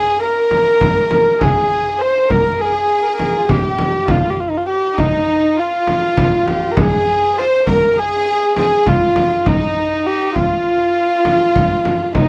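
This is a dry, close recording in a 1970s studio style with a light touch of reverb, cut from a longer Turkish makam ensemble piece in 9/8 with a straight, longing and soulful feel. A dark, boxy kamancheh carries the melody up front, its airy bow, soft attack, light vibrato and portamento giving the line an intimate quality. An overdriven harmonica plays a second line with a gritty, amplified tone, jazz-style scooped notes, tongue slaps and vibrato. Behind them, a lush studio violin section supplies another second line with a focused, smooth top and its own vibrato. A deep frame drum enters at 0.5 seconds, sounding large and distant in a big room yet placed up front, and the ensemble plays on together until the excerpt ends at 12.3 seconds.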